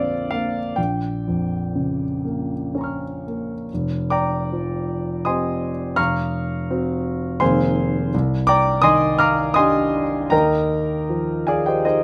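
Heard through close, detailed microphones in a nearly dry room, this solo grand piano sounds intimate and natural, sitting up front with audible action noise and long sustain. It is a short classical fragment in an impressionist style, cut from a longer piece, with a hazy, mysterious mood and a flexible, rubato feel in triple metre. The warm instrument ranges from F1 up to F6 and is tuned slightly below standard pitch, at A4 = 436 Hz. The opening passage drifts from Bbadd9 to Bbm6 before a new section begins at 3.7 seconds on Fmadd9. From there the harmony glides through lush colours such as Gbmaj7#11/F, Ab69/F and Cm9, settling on Ebadd9 at 10.3 seconds as the excerpt ends at 12.0 seconds.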